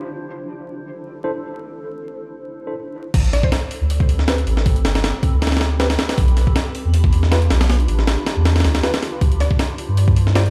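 Vinyl crackle and a large studio reverb, as if played on a big sound system in a bare room, frame this nostalgic, dark drum and bass and jungle piece at 158 BPM in A minor, where a cloudy, evolving granular pad with sampler grit and clean tine electric piano stabs through a low-pass filter and dub echo come first, before a gritty breakbeat kit with a thumpy kick and a high-tuned snare and a deep, round dub sub bass drop in up front at 3.1 seconds, while a woody, bright mallet-like pluck with chorus and dub echo sits briefly in the background.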